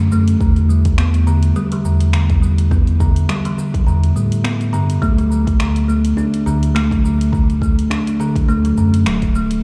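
A woody, hollow-boxed kalimba with tape echo rings out arpeggios over a round, sine-like sub bass with tube saturation from the start, joined at 0.1 seconds by a deep house kit of cabasa, finger snaps and dark hi-hats and at 0.4 seconds by a deep electronic kick, in this earthy, mystical organic downtempo piece at 104 BPM with swung 16ths, moving from Em7 to D and sounding as if played through a big sound system in a bare stone room.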